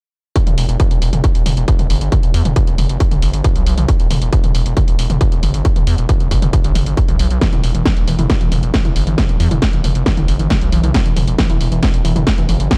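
Intense and dark, this driving peak-time techno excerpt opens at 0.4 seconds with a distorted, up-front electronic kick and a layered kit of cracking snare, hats and toms that pump against the sidechain, all recorded in a large room. A gritty, aggressive synth bass, built from resonant square, sawtooth and sync tones with a filter sweep, growls low and distorted beneath the beat. At 7.4 seconds a warbly, dusty, detuned pluck arrives with chorus, tube saturation and digital delay, adding a mellow lo-fi riff to the dark, dry production.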